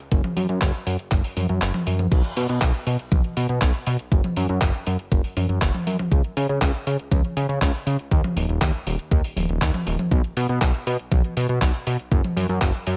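Danceable and romantic, this italo disco excerpt rides a straight 4/4 groove built on a fat, detuned sawtooth bass with a wave-folded edge, filter sweeps and delay, sitting up front beside a thumpy, overdriven electronic kick. A clean, overdriven, sampler-style 12-bit drum machine adds crash cymbal, handclaps, hi-hat and toms with studio ambience. The kick drops out from 1.6 to 2.1 seconds before the next section begins, then returns until 12.7 seconds, within a digital ambience.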